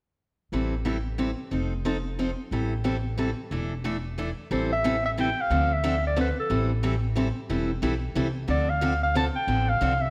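A forceful, punchy clarinet takes the solo melody from 4.5 seconds, its smooth top and light vibrato carrying a jazz-style line that sits up front and holds the spotlight over a fiery, virtuosic take on acoustic string swing in the gypsy-jazz manner. Beneath it, a picked steel-string acoustic guitar with a parlour character provides the accompaniment alongside a woody pizzicato upright bass on steel strings, both entering together at 0.5 seconds and both close and present in the mix. The tune moves at a brisk 181 BPM in 3/4 with a light swing on the eighth notes, set in A minor. Its harmony circles around Am7, passing through F7 and E7sus4 before the clarinet's arrival, then alternating Am7 with Dm7 once the melody takes over. The sound is warm and rounded by a moderate recital-hall reverb, and this fragment is cut from a longer performance.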